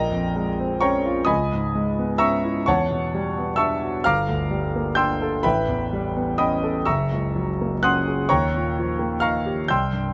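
This is impressionist classical solo piano, a dreamy and hazy fragment cut from a longer piece that runs from 0.0 to 10.1 s. A concert grand carries everything alone in a slow 6/8, played with free rubato that lets each bar breathe. The harmony drifts through a chain of ninth chords, moving from Bbm9 through Dbm9, Em9 and Gm9 before settling through A9, Gb9 and Eb9. The piano spans from a deep bass Gb1 up to G6, and its tone is warm and intimate, with the clatter of the instrument's action audible. The instrument sits up front in a natural, lightly reverberant space, and the top end is rolled off above 8.0 kHz, adding to the veiled atmosphere.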